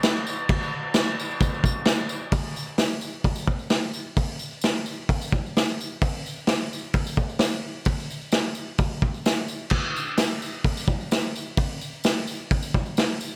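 Rowdy and swaggering, this straight-feel rock excerpt at 130 BPM in 4/4 puts a gritty, saturated vintage drum kit up front, with punchy kick, medium-tuned snare, hi-hat and dark crash cymbals in a studio room under light reverb, while a jingly, close and dry tambourine sits in the background until 13.3 seconds.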